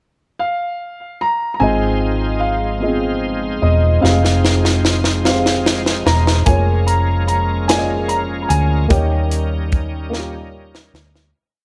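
This short, dry recording opens a slow, reverent gospel piece in 6/8 at 49 BPM in Ab major with an uplifting glow. A warm concert grand piano states a motif-based melody of call phrases from 0.4 seconds, its open, long-sustaining tone carrying a touch of tape echo. At 1.6 seconds the verse begins as a second piano adds short-sustain chords in a quarter-note rhythm with grace notes and deep bass. With it come a shouting, lightly overdriven tonewheel organ holding chords through a slow rotary speaker with chorus vibrato and key click, a very quiet, tight French horn section as a sustained pad, and a dark, round, punchy hollow-body electric bass playing a slow gospel line with chromatic approach notes. A crisp fusion drum kit with a high-tuned snare and tight kick joins at 4.0 seconds in a slow six-eight groove, adding fills before the piece fades out from 8.9 seconds over an Eb7 chord.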